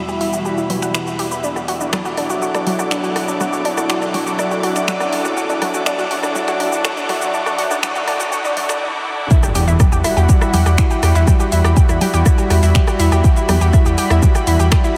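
A dark, detuned saw bass rumbles up front through this driving, melancholic melodic techno piece, pumping under a nasal, wave-folded analog pluck arpeggio and bold, brassy pad stabs, both filter-swept through the build-up and trailed by diffuse ambient delay. A lush unison pad, a tense string-like drone that drops out at 8.8 s, a very quiet riser and impact, and an overdriven house kit of congas, finger snaps, bright hats, rim click and shaker fill out the arrangement. After a brief break, the punchy overdriven kick lands with the drop at 9.3 s, all soaked in a huge, dreamy reverb.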